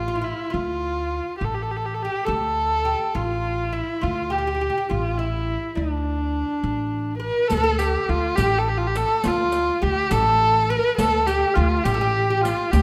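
Set in a straight six-eight, this hypnotic, longing Persian modal piece, cut from a longer work, sets an up-front bowed kamancheh on the melody, its vibrato and portamento singing expressively over a bright, woody oud second line plucked with a plectrum on double strings. Beneath them, a thumpy gut-string upright bass plays pizzicato close to the listener, while a riq's jingling percussion enters in the background at 7.5 seconds. A moderate recital hall reverb gives the ensemble a gentle sense of space.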